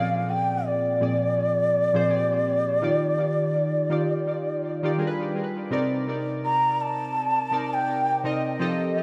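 A swung sixteenth-note feel at 83 BPM in 4/4 carries this sensual, longing R&B fragment in C minor, cut from a longer piece. An airy, bamboo-toned bansuri sings the melody up front with expressive vibrato and tape echo, over up-front analog keys of round pulse-wave and sawtooth tones with chorus, filter sweeps and fast, decaying attacks. The chords move from Bb7 through Ebmaj7 and G7b9 to a Cm9 arrival at 5.7 seconds, set in a moderate plate reverb for an echo-heavy sound.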